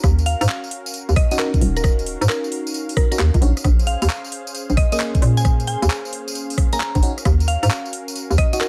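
Bouncy and soulful, this two-step UK garage piece, cut from a longer track, swings its sixteenths at 133 BPM over Ebm7 and Bbm7 chords, driven by an up-front knocking kick and a hollow, punchy FM bass with tube saturation, while a layered garage kit adds handclaps, metallic hi-hats, rim clicks and tambourine. A smooth, detuned sawtooth pad holds sustained chords in the background with chorus and sidechain pumping, and from 0.3 seconds a woody, round mallet-like synth pluck carries the melody through chorus and dub echo. At 1.3 seconds a glassy, bell-like FM electric piano joins with stabs coloured by chorus and phaser, all in a dry mix dusted with vinyl crackle.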